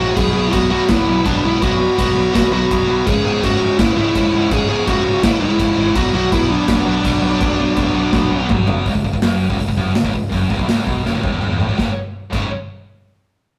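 Heavy and aggressive, this heavy metal passage at 166 BPM in C# phrygian opens in half time. An up-front, warm-toned lead guitar carries the melody over a very quiet, dark second guitar line and a lush, bowed string section with vibrato, all three stopping by about 8.8 seconds. Beneath them, bright scooped and very quiet heavy rhythm guitars churn out the riff, an overdriven picked bass growls in the background, and a punchy acoustic kit with bright cymbals plays fills into the later sections, all within a rough rehearsal-room sound with tube saturation and stone-room reverb in a short cut from a longer piece.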